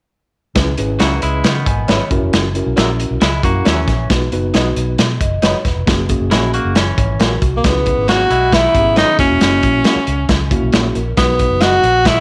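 A breathy tenor saxophone takes the solo melody from 7.6 s, up front with subtone, vibrato, scooped notes and tape echo, giving this driving, passionate uptempo 1960s-style soul piece in C# dorian at 136 BPM its jazz-style voice. Underneath, a gritty breakbeat kit with a tight kick and rolled-off top sits forward alongside a dark, round, foam-muted fingered bass. A mellow tine electric piano, a clean semi-hollow guitar riff and slightly broken-up, lo-fi guitar stabs tucked in the background move through C#m7, F#7 and B in a small, lightly reverberant room.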